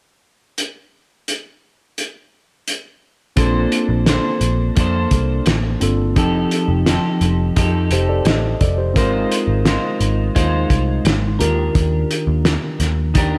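Bathed in a lush hall reverb with a big arena sound, this dreamy, nostalgic bedroom-pop excerpt moves at 86 BPM in a straight 4/4, in Bb major. A cloth-damped drum kit opens alone at 0.6 seconds, thuddy and muffled, with a fat snare, tight kick and hi-hat, and a gritty, saturated, lo-fi small-room character with a rolled-off top. At 3.4 seconds the rest of the band arrives together. A vintage muted picked bass sits up front, dark, round and punchy. A bright, twangy clean electric guitar carries subtle chorus, vibrato and slapback echo, while a mellow, reedy electric piano, heard through its built-in speakers, adds its own slapback echo beneath. The harmony drifts from Bbmaj9 to F9, then Ab6 and Ebmaj7, giving the indie-pop passage a hazy, wistful glow.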